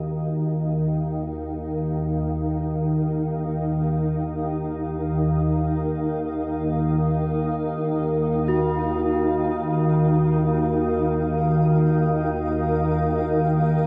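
Ominous and dark, this dark ambient drone drifts in free time around E-flat minor, resting on a single Ebm chord through its 13.9 seconds, cut from a longer piece. Up front sits an organ-like drone in the low register, its detuned sine tones thickened by ensemble chorus and reverb, calm and sustained with slow attacks and long releases while a filter sweep moves across it. Above it, a granular cloud pad holds sustained chords from Eb4 to F5, blurred and evolving, with a moving notch colouring its mellow, detuned triangle tone as it fades in across the whole passage. A bronze singing bowl rings on Gb4 at a lower level, metallic and meditative, struck with a wooden striker and carrying a slow beating in its smooth, dark resonance. The whole is bathed in a huge ambient reverb with an 8.1-second decay, giving the production a dark, warm depth.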